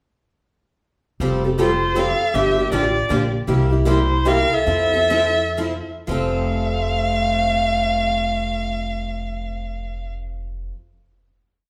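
Acoustic string swing in the jazz manouche style, this playful, lively whole piece in 3/4 and F major swings at 110-158 BPM, with the band playing live together in a reverberant large studio room. A bright, boxy parlour guitar with fresh strings and finger squeak picks every beat, short and accented on two and three, while a second picked guitar sits in the background and a woody, thumpy pizzicato upright bass plays root and fifth with walk-ups. From 1.6 s a warm bowed violin sings song-like motifs with vibrato and portamento, with a raspy, growling clarinet playing a harmony line mostly in sixths alongside it, before the tempo slows from 3.5 s into a final F chord at 6.1 s.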